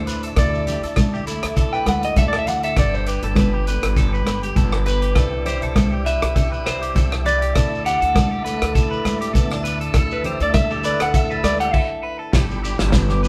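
A clean, picked electric guitar takes the lead with a solo line running from A4 to G5 throughout this carefree, danceable highlife excerpt, pausing for a brief stop at 11.7 s and falling silent at 12.2 s. The band moves at 100 BPM in 4/4 with a light sixteenth-note swing, cycling through Dsus2, G and Cadd9 before returning to Dsus2 and landing on G at 12.3 s. Beneath the solo, a fingerpicked acoustic archtop guitar supplies warm accompaniment while a twangy, slightly broken-up electric guitar with phaser plays bright arpeggios, and a smooth tonewheel organ holds sustained background chords through a slow rotary speaker with chorus vibrato and audible key click. A woody, thumpy pizzicato upright bass on gut strings anchors the low end, and an up-front soul drum kit with dark cymbals, a medium-tuned snare, rim clicks and a tight kick keeps the groove. A grainy, mellow shekere and bright, damped congas sitting further back round out the percussion, all heard as a band playing live together in one large studio with moderate reverb.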